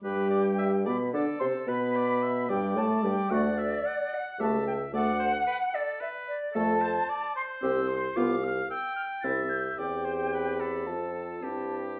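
Graceful and spirited, this quick classical-period movement for wind quintet moves in a straight 3/4 at 110 BPM, opening in G major and shifting to C major at 6.5 s. An airy, close-miked silver flute carries the expressive melody up front with vibrato until 11.8 s, while a clear oboe traces a second line, a mellow French horn with a smooth top and a distant clarinet set back in the background supply accompaniment. A bassoon with light vibrato grounds the bass up front, and the whole quintet sits in a moderate large-studio reverb in this short cut from a longer piece.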